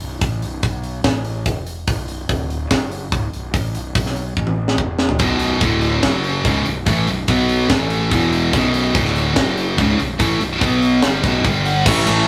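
A driving, menacing hard rock passage opens with a round, punchy fuzz bass and a tight metal drum kit with bright cymbals and a high-tuned snare, the drums closing with a fill into the point at 5.2 seconds where two guitars join: an up-front, high-gain distorted guitar and a dark, hollow-bodied overdriven one playing a riff over power chords. In the final moments, around 11.7 seconds, a bluesy lead guitar slips in behind them, quickly joined by a double-tracked overdriven guitar in the background. The sound is rough, like a rehearsal room with moderate reverb, and the excerpt is cut from a longer piece.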